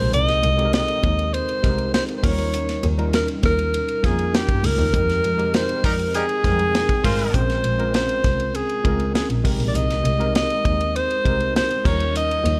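Polished 1980s jazz-funk pop in Ab major at 100 BPM, upbeat and glossy, with a breathy, up-front alto saxophone carrying the melody over a worn, slightly out-of-tune tine electric piano colored by overdrive and analog chorus, an intimate bowed double bass with soft attack and light vibrato, and a dark, tight modern drum kit. A smooth horn section adds a second line from 5.8 to 7.4 seconds, overlapping a band accent on the Fm11 chord, as the harmony moves through Abmaj7, Eb7 and Bbm9. The whole clip sits in a small room ambience and is cut from a longer piece.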